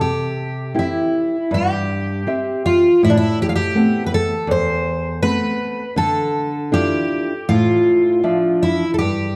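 A fingerpicked twelve-string acoustic guitar carries a shimmering, octave-doubled melody up front while a small, dark nylon-string guitar accompanies throughout this tender, nostalgic fado-style ballad, moving freely at around 80 BPM in 4/4 over C, Amadd9 and Dmadd9 in a moderate recital-hall reverb across a 9.4-second excerpt cut from a longer piece.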